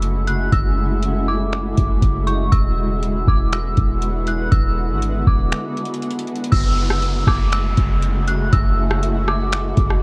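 Melancholic and spacious, this excerpt of atmospheric cloud-rap moves at 120 BPM in a half-time 4/4 feel in F# minor, tuned slightly flat, with chords shifting from F#m9 to E9 and back. An eerie, inharmonic FM bell carries the high melody through chorus and tape echo over a shimmering, ethereal pad that breathes with sidechain pumping. Beneath them, a clean, boomy sine 808 bass sits up front alongside a booming analog drum machine of deep kick, metallic hats, snaps and rim clicks, and after a break at 5.5 seconds a downlifter enters at 6.5 seconds, all colored by worn, warbling cassette tape with little reverb.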